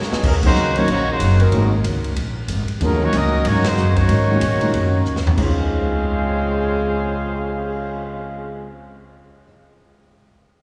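This short excerpt from a big band swing piece opens with a drum fill, a woody pizzicato upright bass and a very quiet, dark trombone section holding a sustained chord for only the first half second. At 187 BPM in 4/4 with swung eighths in Db major, the mood is swinging and brassy. A soft-attack trombone section with light vibrato takes the second line from 0.2 s, while a bright, present trumpet section carries the melody, and a mellow baby grand piano with audible action noise sits in the background comping over Ebm7 and Ab9sus4 before the harmony settles on Dbmaj7 at 5.4 s. The band hits accents at 0.4 and 3.6 seconds, and the polished drum kit, with its punchy kick, medium-tuned snare, ride, hi-hat, toms, crash and cymbal swell, plays a second fill just before that change and stops at 7.9 s. A wet church reverb with a long 3.2 second tail gives the ensemble an airy hall sound, with the bass and piano carrying on to the end.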